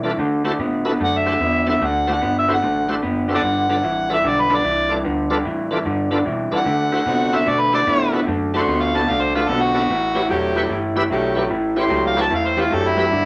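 Laid-back and rollicking, this swung blues clip is cut from a longer piece and built on a D7, G7, D7, A7 progression. An overdriven harmonica takes the solo from 1.0 s, gritty and amplified, with light vibrato, tongue slaps and scooped notes phrased in a jazz style up front in the mix. Beneath it, an electric guitar through a small old amp plays a picked riff that sounds slightly broken-up, compressed and lo-fi, while a vintage foam-muted fingered bass supplies a dark, round, punchy low end. A bright tonewheel organ fills out the accompaniment with a full, shouting tone, light overdrive, chorus vibrato, audible key click and a slow rotary speaker. From 7.1 s a warm saxophone section adds ensemble stabs with vibrato. The whole band sits in a moderate club reverb.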